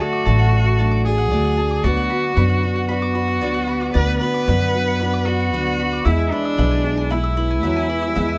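A bright, bowed cello with vibrato carries the melody up front in this nostalgic, anthemic folk excerpt at 114 BPM, with a soft-edged French horn adding a second line, a woody pizzicato upright bass entering at 0.3 s, and a clear upright piano, a boxy picked parlour guitar and mandolin arpeggios in the background, all moving from D through Bm/D to E in a dry, dark production.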